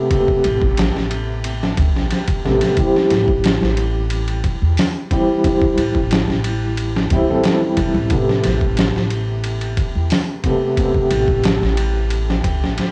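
A dark upright piano opens this brief trip hop fragment in A minor, its mellow, boxy tone carrying audible action noise and a long sustain, colored by tremolo, tape echo, a low-pass filter and the grit of a vintage 12-bit sampler. Just after, at 0.1 seconds, a dusty soul sampler-style drum kit arrives up front, its thumpy kick, medium-tuned snare, hi-hat and ride cymbal compressed, overdriven and re-recorded in a small room. A pizzicato upright bass joins at 0.5 seconds, growly and woody on steel strings, holding down the low end. The straight 4/4 groove moves at an unhurried 90 BPM while the harmony settles on Am9, shifts to C over A, and returns to Am9 at 8.1 seconds. Set in a gritty hardware recording with small room ambience, the mood stays dark and melancholic throughout this section cut from a longer piece.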